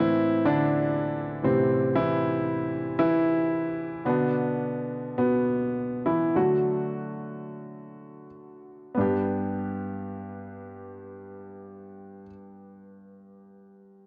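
A home cassette recording in a small, reverberant room gives this heartfelt, emotional pop fragment an intimate, homespun feel, cut from a longer piece in G major at a slow 43-60 BPM. A brief, barely audible wisp of fingerpicked nylon-string guitar, full-bodied and complete with finger squeak, is over by 0.5 s. A clear, natural grand piano sits up front with short sustain and plate reverb, carrying the accompaniment through Am, Bmadd11 and D while slowing down over the first 9.0 s before settling on G.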